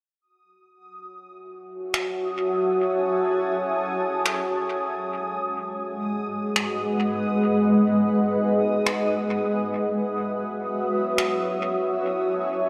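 A bubbling, detuned sawtooth texture with resonant, randomly stepped filtering and chorus opens this deep, spacious ambient dub excerpt in free time and F# dorian, joined at 1.7 s by an up-front, cloudy granular pad of blurred, evolving chords moving from F#m7 to G#m7 and back, while dark, smooth, up-front finger snaps send dub echoes through a wet echo-chamber reverb.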